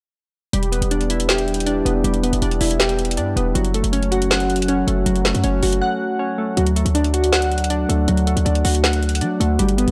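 From 0.5 seconds, glassy, wave-folded digital keys with chorus and a filter sweep open this dark, menacing excerpt of half-time trap hip hop at 159 BPM alongside a punchy 808-style bass with a noise layer and a trap kit of woody snare and metallic hi-hats, all three up front in a dry, gritty mix with transformer saturation, moving from Em7 to F#m to D with a break at 5.8 seconds.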